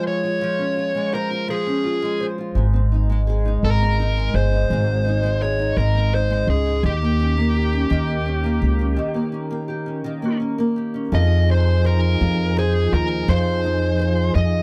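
A dry, close recording with a 1970s studio feel and little reverb opens this brief excerpt from a longer pop ballad in six-eight, moving slowly at 56 BPM in Ab major with a romantic, heartfelt mood. A dark, smooth electric lead guitar carries the melody with a picked, overdriven tone, while a bright, fingerpicked nylon-string guitar, double-tracked, supplies the accompaniment up front. The upright bass enters at 2.5 seconds, plucked and woody, sitting forward in the mix beneath chords that move from Dbmaj7/F to Ab and Eb7. After a break starting at 9.0 seconds, a mellow, round tonewheel organ arrives at 11.1 seconds with sustained chords through a fast rotary speaker and light overdrive, as the harmony settles on Fm7 in a new section.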